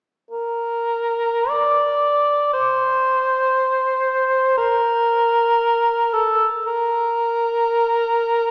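A lone cor anglais opens at 0.3 s with a mellow, softly attacked tone and light vibrato, playing a mournful, meditative classical line in free rubato at a slow pace between A4 and D5 until 8.5 s. The instrument sits up front, its smooth top carried by a wet concert hall reverb that lingers for about 2.0 s, though the overall sound has a small-speaker quality. This brief passage is cut from a longer piece.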